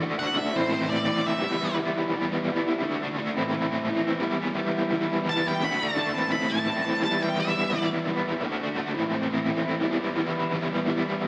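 A crunchy, overdriven electric guitar opens this gritty, raw rock excerpt at 171 BPM in E minor, its double-tracked, picked riff sitting up front with tremolo as it cycles through D, Am and Em. A dark, fuzz-soaked lead guitar adds high distorted melody lines from 0.2 to 1.7 seconds and again from 5.3 to 7.9 seconds, all captured as a band playing live in one room with a wet, large studio reverb.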